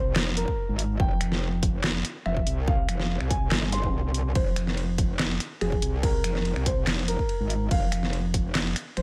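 A metallic, saturated wobble bass with chorus and overdrive sits up front in this menacing, half-time heavy wobble dubstep excerpt, driven by a punchy electronic kick from 0.5 seconds and a layered dubstep kit of deep snare, hi-hat, ride cymbal, handclaps and finger snaps, while a dark, mellow grand piano with audible action noise carries the melody through digital delay and a brief electronic zap flickers in the background at 3.7 seconds, in a dry mix.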